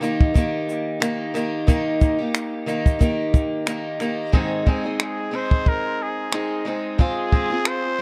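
An echo-heavy, small-room sound frames this sunny, heartfelt acoustic pop excerpt in Ab major at 90 BPM with a light sixteenth-note swing, where a parlour-toned picked steel-string acoustic guitar with audible finger squeak and dub echo accompanies a dark, rolled-off compact cocktail kit of tight kick, finger snaps and shaker, until a raspy, growling pop-style trumpet with light vibrato and its own dub echo enters at 5.0 seconds for a short solo over chords moving from Eb to Ab and Fm/Ab.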